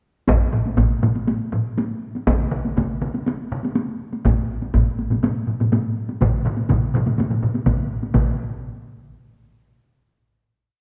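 Taiko ensembles struck with hard and heavy sticks drive this powerful, ceremonial Japanese traditional piece at 122 BPM in a straight 4/4, with up-front repeating patterns and taiko phrases (one ensemble vintage and band-limited, another in a live room) joined by a fourth group at 2.3 seconds, speeding up throughout a wet scoring-stage reverb before a final hit at 8.1 seconds.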